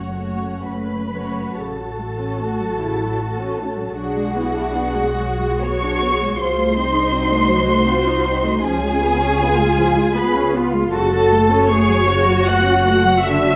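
In a rubato triple metre, this slow, romantic movement for string orchestra, cut from a longer piece, unfolds with a yearning, melancholic mood, its harmony passing through a diminished chord and a dominant seventh before settling back on the minor home chord at 10.9 seconds. Muted violins carry the veiled melody up front and close, while a second muted violin section sings a lush line beneath it, and con sordino violas supply dark, soft-attacked accompaniment. Cellos and double basses, also muted and bowed with vibrato, anchor the bass, the basses smooth-topped, all within a recital hall's reverb.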